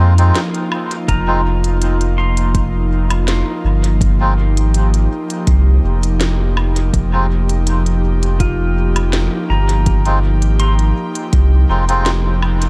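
This ambient dub excerpt rests on a single Fm7 chord, with a meditative, deep mood and a straight 4/4 feel. A round, soft sub bass sits up front with tube saturation, while an airy, breathy pad holds sustained chords through chorus, its detuned layers and noise texture blooming in slowly. Reedy, nasal melodica stabs from a vintage plastic-case instrument carry dub echo. A drum kit with a woody snare, crisp hi-hats and woodblock, re-recorded in a large room, also trails dub echo, and a layered electronic kick sits in the background. A clean, twangy pedal steel guitar, played with fingerpicks and slide, adds arpeggios with volume swells and tape echo from 1.1 to 3.9 seconds, then returns at 8.4 seconds. The mix is dry overall, with little reverb.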